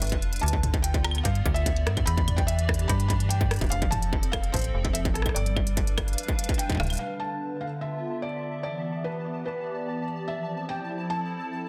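A distorted electronic kick sits up front in this melancholic, eerie IDM excerpt at 146 BPM in D dorian, joined by a metallic FM bass with a fast, decaying attack. An industrial kit of claves, smooth filtered hi-hats, rim clicks and toms ticks along in studio ambience. Over this, a felt-muted upright piano carries an intimate melody with audible action noise and tape echo, while a hollow, flute-like pad warbles through sustained chords from Dm69 to Em7, F and G7. Amid a drum fill and a band accent, the kick stops at 6.8 s and the bass at 7.0 s, when a quiet, detuned gated texture enters, pulsing in tempo with chorus and its own reverb. The harmony then moves from Dm69 to Em7 and settles on Fmaj7 as this dense, heavily limited mix breaks off.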